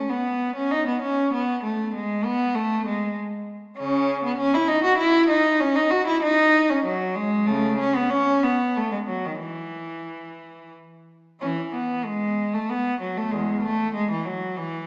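Heard through a small-speaker sound and a wet recital-hall reverb, this excerpt from a baroque-style suite movement for unaccompanied cello has a dance-like, radiant mood, moving in 3/4 at 96 BPM with a rubato feel and settling into E major from 3.8 s. A single bowed cello sits up front, its tone rich and smooth with light vibrato, ranging from E2 to F#4 in an even line. A new section begins at 11.4 s and runs to the cut at 14.9 s.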